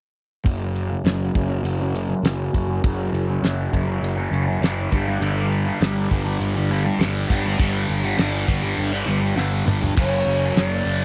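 Psychedelic rock at 101 BPM in a straight 4/4, this brief cut from a longer piece feels mysterious and dark, moving from F# to G and back to F#. A thick, bright fuzz guitar, distorted and double-tracked, sits up front with its riff, colored by phaser and a low-pass filter. The picked electric bass is overdriven with a fuzzy growl, while the damped 70s drum kit sounds dry and acoustic, with a fat snare and tight kick, and fills in just before 10.0 seconds. Behind them, a smooth, clean tonewheel organ holds sustained chords through a slow rotary speaker and chorus vibrato. At 10.0 seconds an airy concert flute enters with a distant, expressive melody touched by tape echo and vibrato, joined by grainy maracas in the background, all set in light reverb and small room ambience while a filter sweep shapes the opening section.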